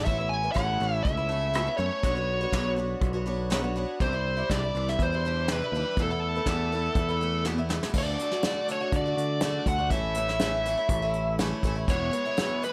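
A dark, distorted lead guitar carries a bluesy melody up front over a shimmering, octave-doubled twelve-string acoustic and a growly picked electric bass, with a soft brush kit in a small, natural room joining at 0.1 s, in this jangly, open-road folk and heartland rock excerpt at 122 BPM in A major, where a drum fill at 7.5 s moves the add9 and suspended chords into a D, A and E passage at 7.9 s.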